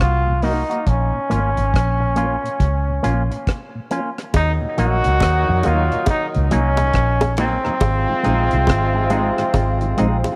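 A brilliant, punchy trombone carries the melody with light vibrato and tape echo over a foam-muted, round electric bass, a dry, dark reggae drum kit with tight kick, hi-hat and rim click, a mellow tonewheel organ with slow rotary speaker in the background and an envelope-filtered guitar in this meditative, hypnotic roots reggae excerpt at 69 BPM in Eb dorian, where a smooth horn section and high-tuned bongos join at 4.3 seconds.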